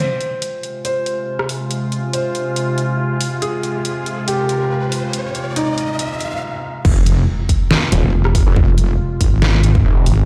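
Heard on a big sound system in a bare room with large studio reverb, this menacing, chaotic heavy wobble dubstep fragment in F minor at 140 BPM with a half-time, swung feel opens with a soft, intimate felt-muted upright piano melody bathed in dub echo over an evolving, warbling wavetable pad with chorus and sidechain pumping, an electronic riser and the dubstep drum kit's deep snare, hi-hat, rim click and crash building until the piano stops at 6.8 seconds, when an impact, a punchy electronic kick and an up-front, detuned wobble bass with chorus and overdrive hit the drop, joined at 7.9 seconds by a snarling, growling distorted saw bass with a moving notch.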